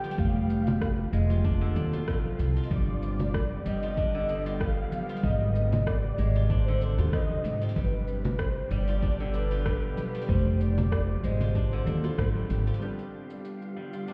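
This meditative, earthy slice of organic downtempo opens with a breathy, flute-like synth lead carrying the melody over a tense, string-like bowed drone, a silvery steel-string zither picking arpeggios through a low-pass filter, and an overdriven deep house kit with metallic hats, rim click and shaker. Moments later a woody, thumpy upright bass comes up front with sidechain pumping, joined by a deep, distorted electronic kick and bright congas and bongos sitting back in the mix, all moving at 95 BPM in 4/4 with a light 16th-note swing in G phrygian dominant. The harmony circles through Fm, G, Ab and an Abmaj7 before resolving to G, with the lead drifting through ensemble chorus and tape echo while the drone breathes with vibrato. After a band accent near 12.2 seconds, the kick, bass and lead fall away, and from 12.8 seconds filter sweeps wash over the zither and drone as a soft, mellow felt-muted upright piano steps forward with tape echo. 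A faint, dark, wind-like tuned noise texture appears at the very end, and the whole recording sounds muffled as if heard through a wall, set in stone-room reverb.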